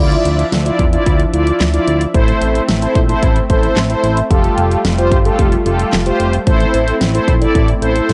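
A melancholic, nocturnal synth-pop fragment, cut from a longer piece, moves at a steady, straight four-beat pulse over a short cycle of minor-leaning chords. Up front, a mellow synth brass carries the accompaniment with a round, dark, detuned sawtooth tone, coloured by chorus and phaser. Behind it, a brassy analog pad holds sustained chords that sound bold and evolving, with a soft-attack filter swell, vibrato and chorus lending it a bright shimmer. A fat analog bass anchors the low end with a thick, wave-folded tone and a filter sweep, while a punchy, layered electronic pop drum kit of kick, fat snare, hi-hat and handclaps sits prominently from 0.1 seconds. The mix is dry and gritty, with transformer saturation and a dulled, cassette-tape top end that gives the whole passage a worn, late-night character.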